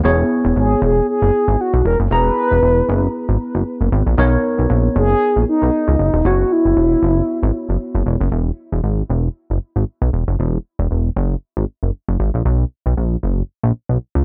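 A worn, slightly out-of-tune tine electric piano with lush chorus and a glossy, up-front chorused synth bass open this smooth, feel-good slice of early-eighties boogie funk at 116 BPM, with a gentle swing on the sixteenths. At 0.6 seconds a round, horn-like synth lead enters, warbling with vibrato, chorus and tape echo over chords moving from E6 through Bmaj9 to F#7sus4. The piano drops out at 8.3 seconds, leaving the plucky, pulse-width-modulated bass to carry the second section alone until 14.2 seconds, all captured in a dry, close 1970s-style studio sound.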